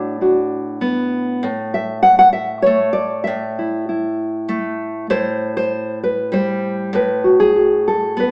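A solo nylon-string guitar opens this short, hopeful folk fragment, played up front in a gentle 3/4 with a thumb-plucked, classical tone that spans from A2 up to F#5. The harmony moves from Bm/A through Esus4/A and C5/A to B5/A, all resting over a low A. A wet stone-room reverb and a small-speaker character give the roughly 8.3-second fragment the feel of a live performance in an echoing space.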